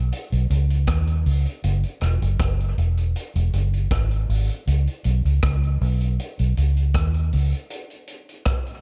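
Dub reggae at 79 BPM in a straight 4/4, deep and meditative, cut from a longer piece. A vintage muted electric bass, dark, round and up front, holds the low end between E1 and D#2 until 7.5 seconds, while a vintage acoustic drum kit with a punchy kick, hi-hat and rim click sits lower in the mix with a rolled-off top. The sound is dry, and the drums carry on alone through a break from 7.7 seconds to the close at 8.8 seconds.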